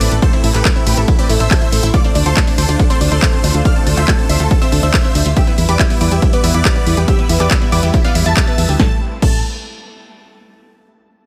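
Dry and close, with little reverb overall, this excerpt of uplifting trance at 140 BPM in A minor is caught in a drop that runs to 8.8 seconds, its mood driving and emotional over a chord cycle of Am, Dm7 and Em before returning to Am. A huge, euphoric supersaw lead carries the melody, detuned and bright with phaser, digital delay and sidechain pumping, while a very quiet, wave-folded unison pluck traces a second line higher up. Beneath them a lush, thick unison pad holds sustained chords with chorus, phaser and a vintage 12-bit sampler grit, and an analog pluck in the background spins arpeggios through a moving notch and filter sweep, colored by chorus and delay. The low end is anchored by a round, dark FM bass with a fast attack and sidechain pumping, alongside the electronic kick, which enters at 0.2 seconds, punchy, tape-warm and up front with a touch of studio reverb. A house drum kit fills out the groove with a punchy snare, handclaps, crash cymbal and warm hi-hats, the hats and cymbals breathing with sidechain pumping.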